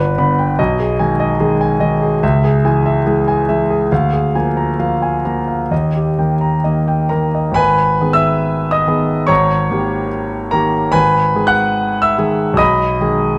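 Bittersweet and passionate, this short excerpt from a longer romantic character piece for solo piano unfolds in G# minor at a flexible 62-74 BPM in 2/4, with rubato pulling the pulse back and forth. A concert grand carries everything from the first moment to the end at 13.4 seconds, ranging from a deep bass down at G1 up to F#6. Its tone is intimate and polished, sitting up front with long sustain, and the close, detailed miking lets a little action noise from the instrument come through. The opening phrase moves through G#m/B, C#m and A#7/D before resting on D#, and a second phrase begins at 7.6 seconds, settling back onto G#m by way of D#7/G#. A moderate stage reverb gives the notes a gentle halo that lingers around each chord.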